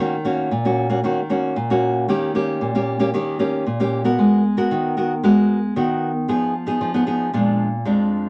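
A small, wet room with a short half-second reverb surrounds a single nylon-string guitar, placed up front and sounding full-bodied and classical, with audible finger squeak. This brief excerpt of a samba runs at 114 BPM in 4/4 with a straight feel, in Eb minor and tuned to A4 = 439 Hz. The mood is lively yet yearning. The fingerpicked acoustic guitar plays solo for the whole 8.3 seconds, ranging from F2 up to Bb4. Its harmony moves from Ebm7 to Eb7, then through Abm9 and Fm7b5 before reaching Bb7 at 7.3 seconds.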